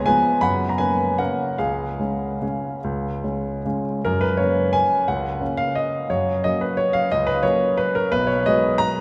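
A rubato 3/4 classical waltz for solo grand piano, sparkling and elegant, with an intimate, up-front piano tone whose action noise is audible, set in a vast, echoing cathedral reverb, moving into a new section at 4.0 seconds in this brief passage cut from a longer piece.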